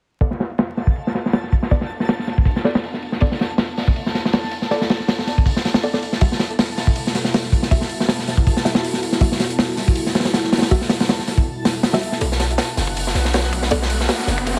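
Nostalgic and raw, this jungle-flavoured drum and bass excerpt rides a gritty, saturated breakbeat kit with a punchy kick, swept through a filter for the first 12.2 seconds. Muted dub chord stabs trail echo over a warbling tape-like pad and a twinkling granular shimmer, both set in the background, on a bed of vinyl crackle. At 12.2 seconds a deep, boomy 808-style bass arrives as the track builds and the stabs take a filter sweep, and a background electronic riser enters at 13.1 seconds.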